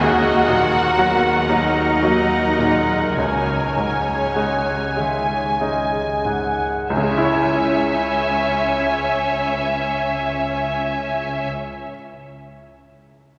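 A deep church reverb surrounds this short, sorrowful passage cut from a longer cinematic film score for orchestra, which moves in a slow, rubato three-time that slows through its first 6.9 seconds. A studio violin section carries the melody with focused vibrato from a distant perch, while a second, lush symphonic violin section, a pure, straight-toned concert flute, a very quiet solo clarinet and a solo cor anglais with light vibrato weave second lines around it. A brilliant, polished grand piano gives the most present accompaniment, its short-sustained notes continuing until 13.4 seconds, beside a smooth, even viola section in the background and a thumb-plucked harp playing ringing arpeggios. Beneath them, a bowed double bass section and a close, very quiet cello section hold the bass. Barely audible timpani struck with medium mallets join at 3.2 seconds as the harmony moves from D#m through C#sus2 to a bittersweet C#m.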